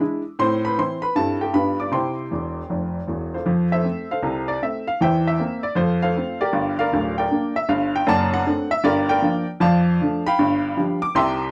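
A worn, woody, slightly detuned upright piano plays solo stride jazz up front in a snug booth, swinging and playful across its range, with a brief fill at 2.3 s leading into a new passage at 3.5 s in this fragment cut from a longer piece.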